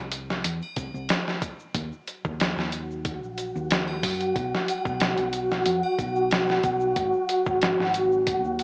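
Hypnotic and cinematic, this trip hop piece moves with a slight swing under a dusty, worn haze. A gritty, compressed sampler-style drum kit sits up front, its thumpy kick, fat snare and hi-hat re-recorded in a large room, while a round, hollow-body electric bass plays low and dark beneath it. A tube shaker and triangle stay close and dry in the background. At 2.9 seconds a deep, detuned analog pad with chorus and a slow attack enters alongside an airy, breathy wind-like noise layer carrying its own reverb, as the harmony moves from Eb minor through B5 to Ab7(no3). The mix sits in an echo-chamber reverb and carries the warbling pitch drift of old cassette tape heard through a small speaker.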